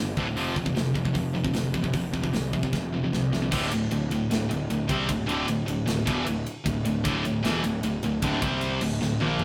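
This relentless, epic heavy metal passage, cut from a longer piece, opens with two distorted electric guitars playing a picked riff, one high-gain and the other overdriven and set in the background, over a growly, fuzz-laden picked bass. A tight, up-front acoustic drum kit with bright cymbals, a medium-tuned snare and a tight kick joins at 0.2 seconds, and after a fill at 2.7 seconds the band drops into a half-time feel from 3.5 seconds. The sound is a rough rehearsal-room recording with tube saturation and light reverb, while the polished drums carry an airy, big-room quality.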